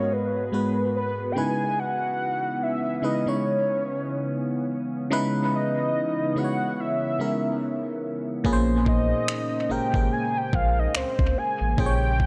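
Contemporary R&B at 72 BPM in 4/4 with a swung sixteenth feel, moody and sensual, moving from G#m9 to C#m9 and then A#m9 over this brief echo-heavy passage. A velvety, detuned sawtooth synth lead with a sub octave carries the melody up front, while a bell-like FM electric piano plays accompaniment and an ethereal, glassy FM pad holds slow-blooming chords in the background, all three bathed in chorus and the lead and piano in dub echo. At 8.4 seconds a deep, round sine sub bass arrives alongside a gritty, compressed sampler-style kit of finger snaps and a thumpy kick placed up front, both playing through to 12.3 seconds.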